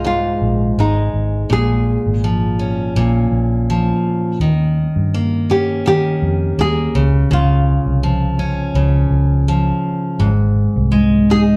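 A lightly swung 16th-note feel at 83 BPM in 4/4 carries this easy-going, carefree acoustic pop passage in Ab major: a fingerpicked nylon-string guitar with audible finger squeak sits up front on the melody, a full-bodied jumbo steel-string acoustic guitar is picked beneath it as accompaniment, and a dark, round, foam-muted vintage electric bass adds a punchy low end, with the band moving through Ab, Bbm7, Eb7 and Db back to Ab, played live in one room with light reverb and lossy-compression artefacts.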